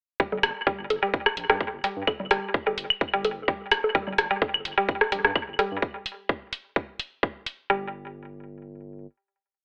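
A tight four-on-the-floor kick and bright programmed hi-hats drive this clinical, sparse minimal techno piece in G minor at 128 BPM, while tape-warm electronic bongos, congas, rim clicks and claves scatter clicks and blips in cross rhythm, a deep, dark analog bass rolls in staccato, and a woody FM mallet-like synth pluck repeats a chorused, tape-echoed 7-step loop that drifts against the bar, with sidechain pumping breathing through both pluck and bass, the mix carrying a telephone-like tone in a small room until the groove gives way at 7.7 seconds to a final note that rings until 9.6 seconds.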